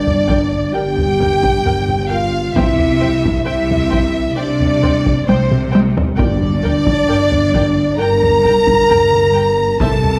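A moderate concert-hall reverb surrounds this relentless, dramatic passage of epic orchestral film score, cut from a longer piece, where dark French horns hold tight sustained chords up front over a Gm–C–Gm progression. A lush symphonic violin section carries the expressive, soft-attack melody alongside an airy, very quiet flute section and a rich chamber violin section in the background. A warm viola section adds accompaniment while focused cellos and distant double basses with portamento form the bass, hard-stick taiko drums play throughout with a fill at 5.3 s, and round, soft-mallet timpani sound at the start and again at 6.2 s.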